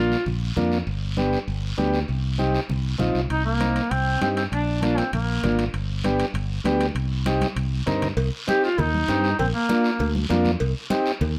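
Driving and fiery, this cumbia fragment sets a vintage, mellow combo organ and a warm, up-front fingered electric bass over raspy guiro and bright, hard-handed congas tucked in the background. A duduk, distant and roomy yet forward in the mix, carries a folk-style solo line full of vibrato and scooped notes, returning at 8.5 seconds, while ringing metal-shell timbales and cowbell join at 3.3 seconds. A drum fill at 7.3 seconds leads into the closing section, with moderate studio reverb giving the recording a sense of space.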